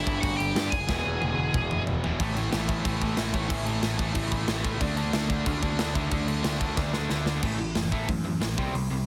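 Upbeat and rebellious, this short punk rock clip charges along at 183 BPM in a straight 4/4, cut from a longer piece. A high-gain lead guitar with a distorted, picked edge sings a brief melody between E4 and G#5 for only the first 1.8 seconds, while a double-tracked, distorted rhythm guitar drives the riff up front through to the end at 9.1 seconds. Underneath, a growling picked bass, direct and amped with overdrive, rumbles between E1 and G2. A big, polished acoustic drum kit sits up front with a punchy kick, a medium-tuned snare, airy bright cymbals, hi-hat and toms, throwing in fills from 0.9 to 2.2 seconds and again just before the final section. The harmony moves through G5 and E into A5 and D5 before returning to A5, all captured dry with a heavily compressed, radio-ready sound.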